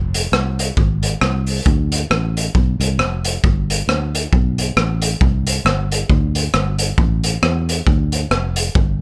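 A raw garage drum kit, gritty and saturated with a punchy kick, pumping small-room sound and rolled-off top, drives this bouncy, cheerful ska excerpt at 135 BPM in a swung 4/4 with hi-hat, kick and rim click, while an up-front fingered electric bass, dark, round and foam-muted, holds the low end between F1 and E2 in a dry mix.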